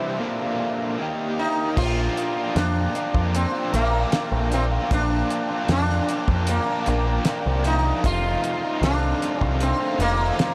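Soaked in a huge ambient reverb with an 8.4-second decay, this dreamy psychedelic rock excerpt floats by in a hazy, trippy mood at a slow 76 BPM in straight 4/4. It opens with a short break in which a bright, buzzing sitar carries the melody through a tape echo, its sympathetic strings shimmering, while a double-tracked overdriven electric guitar plays a riff with tremolo and a very quiet, vintage combo organ holds sustained chords with light vibrato. At 1.8 seconds a dark, round dub-style electric bass arrives up front alongside a dry 70s drum kit, whose fat snare, tight kick, hi-hat and crash cymbal give the groove its weight. The harmony moves from Bb to Ebadd9 in the opening, settles on Bb6 once the band is in, and shifts to F7sus4 at 8.1 seconds. The sitar, picked guitar and bass sit forward in the mix, while the buzzy organ stays far in the background.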